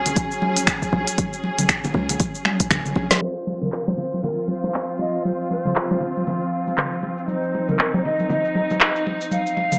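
A veiled, con sordino string section sustains dark chords from the start of this hypnotic afro house excerpt at 118 BPM in F phrygian, pumping against a boomy 808-style bass and a deep electronic kick that both drop out before 3.2 seconds, while a woody-snared, crisp-hatted afro-pop kit with snaps, claps, shaker and toms rides up front beside soft-handed, thick-skinned congas, and after a drum fill and band accent a distant, hollow pan flute enters at 3.2 seconds with analog delay as a filter sweep runs under the gritty, small-speaker sound.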